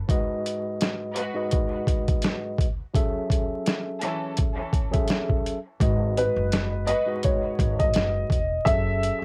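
A gritty, reflective boom-bap hip-hop excerpt at 84 BPM in 4/4, with a light 16th-note swing and a home-recorded cassette sound dusted with vinyl crackle in a dry space. A sampler-style drum kit sits up front for the whole clip, compressed and pitched down, with a thumpy kick, medium-tuned snare and hi-hat carrying a tape-softened grit. A clean tine electric piano, played through its built-in speakers, comps on G#m7 and F#m9 chords throughout, filtered and run through cassette tape. Bowed studio strings with a reedy, gut-string period tone add stabs from 1.2 to 7.2 seconds, filtered and touched with analog delay. At 5.8 seconds a woody pizzicato upright bass enters low in the register, and from 6.2 seconds a dark, worn, slightly detuned upright piano takes the melody, intimate and mellow with audible action noise, long sustain and a trace of analog delay.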